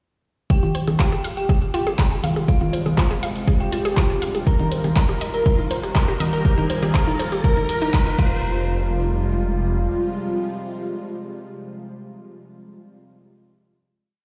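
Melancholic and cinematic, this melodic techno piece in F minor runs at 121 BPM in a straight 4/4, built as one long build-up that gives way to a final hit at 8.4 seconds. An overdriven electronic kick sits up front in a four-on-the-floor pattern, joined by a deep house kit of closed hi-hats, low congas, handclaps and crash cymbal; both carry studio reverb and stop at 8.3 seconds. A menacing detuned saw bass plays off-beat with a filter swell and sidechain pumping, while a lush, punchy unison pluck cycles a 16-step arpeggio through digital delay. The thick, bold unison lead carries a repeating riff with vibrato, doubled an octave higher by an eerie, inharmonic FM bell in the background. A bright, morphing wavetable pad enters at 1.3 seconds with phaser and its own reverb over chords moving from Fmadd9 to Ebadd9/F and back, a riser enters in the background at 2.2 seconds as a transition effect through the build, and the whole recording rings with the stony reverb of a bare room heard on a big sound system.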